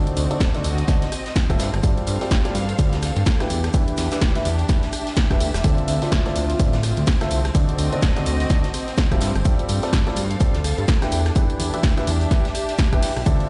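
A clear, polished baby grand piano riff, pumping through a low-pass filter and delay, opens this energetic, bittersweet piano house excerpt alongside a fat, detuned sawtooth bass and a lush, bowed symphonic string section in the background, moving through D7b9, G9sus4, Em7 and Dm9 in a swung 4/4 as an overdriven analog drum machine, a very quiet close and dry tambourine, a distant brushed kit with pumping hats and a tape-warm electronic kick up front at 0.4 seconds join in, all set in a stony, bare-room reverb with a rolled-off top.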